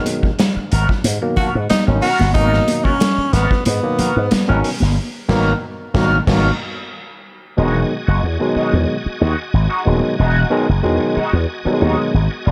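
Funk with a hypnotic, driving feel, built on a growly, punchy slap bass through an envelope filter, barky overdriven tine electric piano stabs, and a twangy clean electric guitar with wah and lush chorus. A vintage drum kit with a punchy kick and dark cymbals in a pumping small room, along with high-tuned congas in the background, propels the opening toward a band accent at 5.0 seconds, while a warm tenor saxophone with scooped notes and tape echo plays a brief jazz-style solo from 1.4 seconds. At 7.6 seconds the harmony shifts and a bright, shouting tonewheel organ enters with sustained chords, key click and a slow rotary speaker.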